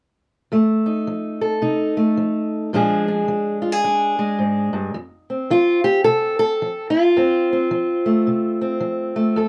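A fingerpicked steel-string acoustic guitar carries this short solo excerpt of acoustic country blues, its dark, boxy parlour tone sitting up front in the mix. The mood is laid-back yet rollicking, moving at 109 BPM in 4/4 with a swung eighth-note feel. Set in F mixolydian, the guitar ranges from F2 up to A4, moving from F7 to Bb7 in the opening section before settling on F when the second section begins at 5.0 seconds. Close, detailed microphones capture the instrument with a light touch of reverb. The guitar plays from 0.5 to 9.5 seconds, a brief slice cut from a longer piece.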